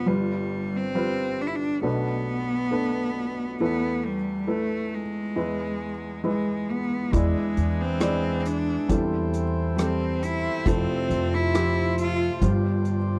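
A clear, bowed cello sings a smooth solo line with light vibrato over a soft, felt-muted upright piano, whose mellow accompaniment and audible action noise sit close and intimate from the start of this reflective, melancholic acoustic folk-pop ballad. At 7.1 seconds a reedy, breathing harmonium adds sustained chords from a boxy small room, while a woody, growly pizzicato upright bass and a loose indie drum kit, with a punchy kick, hi-hat and rim click in a pumping studio room, join underneath. Light reverb surrounds the parts as the harmony drifts from G7 and Bm7 through Esus4 and E7 toward Fmaj7 and an unresolved G7sus4.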